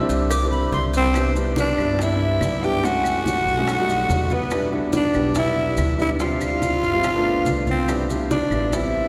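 Afro-Cuban jazz at 143 BPM in C major, sunny and danceable, this short cut from a longer piece opens with an airy, reedy flute solo before a raspy, growling alto saxophone takes the melody up front at 1.0 seconds, over clear, woody upright piano chords, a dark, thumpy pizzicato upright bass, compressed, saturated congas in the background, very quiet cowbell and bongos, grainy maracas and dry claves, all bathed in a cathedral-like reverb.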